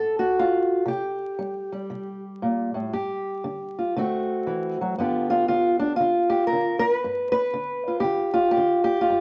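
Vinyl crackle and a moderate studio reverb give this short passage of acoustic country blues a worn, lived-in sound. A single fingerpicked old ladder-braced acoustic guitar plays solo and up front throughout, its woody, dark tone coloured by old strings. The mood is laid-back and soulful, moving at 117 BPM in 4/4 with a swung eighth-note feel in G mixolydian, tuned slightly under standard pitch. The guitar ranges from G2 to B4 as the harmony moves from a rootless D through C5, G5 and D7 before arriving on G7 at 5.0 seconds. The passage is cut from a longer piece and lasts just over nine seconds.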